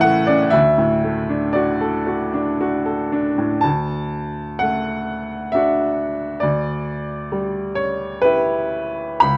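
A bright, woody upright piano sits up front in this brief fragment of a serene, nostalgic romantic nocturne, moving in a rubato three-four across a span from C#2 to B5 and turning to a new section at 3.6 seconds, heard through light reverb and the worn, warbling pitch drift of an old cassette tape.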